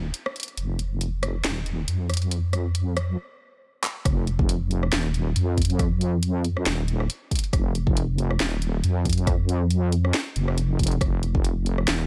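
A deep, mellow wobble bass sits up front throughout this dark, meditative slice of deep dubstep, its sawtooth-and-sine tone sustained and compressed, with a fast attack and a gentle chorus shimmer. Beneath it, a garage drum kit of handclaps, hi-hat, rim click and a cracking, overdriven snare rides a swung, half-time groove, placed close and carrying a touch of small-room ambience. The opening builds toward a stop at 3.2 seconds, broken by a drum fill at 3.8 seconds. At 4.1 seconds the drop arrives and a layered electronic kick joins with a deep, roomy thud. The mix stays dry and intimate, keeping the hypnotic bass and crisp percussion in sharp focus as the passage rolls on.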